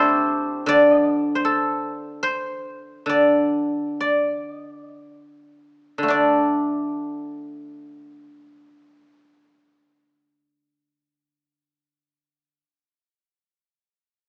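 A solo guzheng, played with fingerpicks and sitting up front with a silvery, ringing tone, opens this flowing, elegant fragment of a longer Chinese traditional piece in the D shang mode, moving in a free rubato between 52 and 84 BPM and slowing down through the first 6.1 seconds before a new passage begins, all within a moderate recital-hall reverb and a small-speaker sound.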